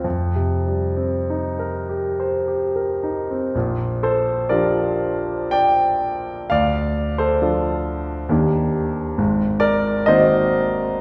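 Hazy and luminous, this short passage of impressionist classical music for solo piano drifts in a gentle triple metre with a freely breathing, rubato feel. A concert grand carries everything alone from 0.0 to 11.0 seconds, its tone natural and up front in character, with a deep bass reaching down to Ab1 and lines rising as high as G5. The harmony floats on extended chords, opening on a suspended F9sus4 before settling at 3.5 seconds into a Bb6 and moving on through Dm7, Ebmaj7 and a closing Ab9. A generous scoring-stage reverb wraps the instrument, and the listener seems placed further back in the room, so the sonorities bloom into a misty halo. Cut from a longer piece, the passage feels like a glimpse of a larger dreamlike reverie.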